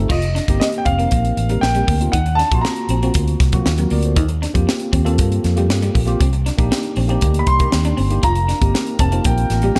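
A straight 4/4 groove at 118 BPM drives this short cut from a polished 1980s jazz-funk pop track, breezy and urban in mood. A crisp fusion drum kit sits up front with a punchy kick, high-tuned snare, hi-hat and crash cymbal, alongside a dark, round, foam-muted fingered electric bass. A worn, slightly out-of-tune tine electric piano with subtle chorus carries the accompaniment, while a clean, picked semi-hollow guitar plays a riff in the background, also with subtle chorus. An intimate concert grand piano with long sustain, audible action noise, lush chorus and delay takes the melody, dropping out at 3.1 seconds and returning at 7.4 seconds. The harmony moves through F9sus4, Ebm6, Eb69 and Cm7 before coming back to F9sus4 at 8.2 seconds, where a classical-style brass section adds sustained chords in the background, all set in a small room with light reverb.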